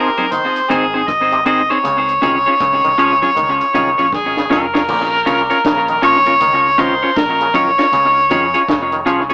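Laid-back and warm, this short roots reggae excerpt moves at 79 BPM in Db major with a swung sixteenth feel, and a mellow harmonica carries the melody up front with light vibrato and scooped notes. A bright, twangy clean electric guitar with tape echo plays the accompaniment, while a stringy clav plays arpeggios through auto-wah and tape echo. Underneath, a dry, dark reggae drum kit with a high-tuned snare and tight kick, damped congas in the background, and a round, foam-muted vintage bass entering at 0.7 s keep the groove, with a drum fill at 4.1 s leading into the second section, all heard through an AM radio sound in a moderate studio room.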